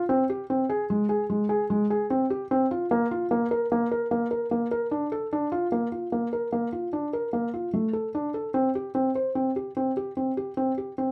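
Hopeful and shimmering, this short contemporary instrumental excerpt is cut from a longer piece and features a single felt-muted upright piano playing solo from start to finish at 11.1 seconds. The piano sits up front in the mix, its thick felt giving the notes a soft, mellow and intimate character that ranges from Ab3 to C5. Set in Bb major at 149 BPM in an unusual 7/4 metre with a straight feel, the music moves through two brief sections, shifting into new material at 5.7 seconds. A moderate studio reverb adds a touch of space around the dark, cozy production, keeping the sound close and personal.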